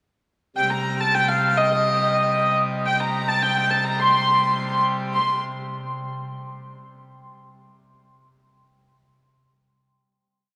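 A cathedral's wet, lingering reverb surrounds this short medieval dance, a whole piece played live in one room. At 105 BPM in a straight 2/4, in C dorian, it feels ancient and driving. A single hurdy-gurdy sits up front with the modal melody, its nasal, earthy voice carrying a smooth top as it moves between Eb5 and C6 with ornaments along the way. Beneath it, a pipe organ on full organ holds a drone between C3 and G3, its mixtures giving a brilliant, majestic baroque voicing with a touch of chiff. Both parts begin at 0.6 seconds, and after the organ drops away at 5.2 seconds the hurdy-gurdy carries the final note alone until 5.4 seconds, leaving the room's echo to finish the piece.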